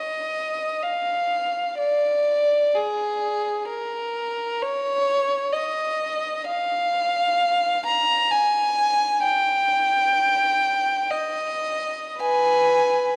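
A single bowed violin opens the recording at 0.0 s and plays unaccompanied through to 13.2 s, in a meditative, lonely classical piece. The pulse is free and rubato, moving loosely in 3/4 at around 52-66 BPM, with the tuning set to A4 = 443 Hz. Played sul tasto with a soft attack and light vibrato, the tone is warm and intimate, and the line stays between Ab4 and Bb5. The lone player sits close and up front, framed by a moderate concert hall reverb with a 2.1 s decay that gives the dark production a sense of space. Cut from a longer work, this brief passage feels like a meditative, solitary reflection.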